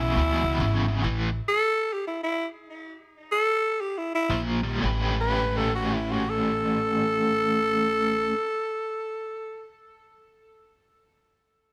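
A swung shuffle in 4/4 drives this rollicking, soulful electric blues fragment, cut from a longer piece. A growling tenor saxophone leads the melody as an up-front jazz-style solo throughout, its raspy, gritty tone marked by scooped notes and a light vibrato. A biting, overdriven electric guitar plays a picked riff with tremolo, and a woody, pizzicato upright bass sits beneath it. At 1.0 seconds the band stops and the tempo slows, leaving the saxophone alone until guitar and bass return at 4.3 seconds. The tune then moves into a second section at 4.8 seconds, with a light reverb around the players.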